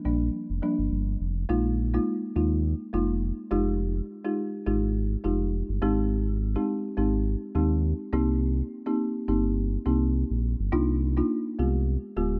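Mellow and hypnotic, this short afrobeats passage in C minor moves at 104 BPM with a lightly swung sixteenth-note feel. A woody, rustic folk marimba struck with medium mallets carries the accompaniment up front in a dry, boxy small-room sound, while a deep sine sub bass doubled at the octave sits just as close, full and sustained with a fast attack. The harmony drifts through chords such as Fm9, Abmaj7 and Cm7 before turning to Cm11 at 10.7 seconds and closing on a tense G7b9, all framed by light reverb and studio ambience.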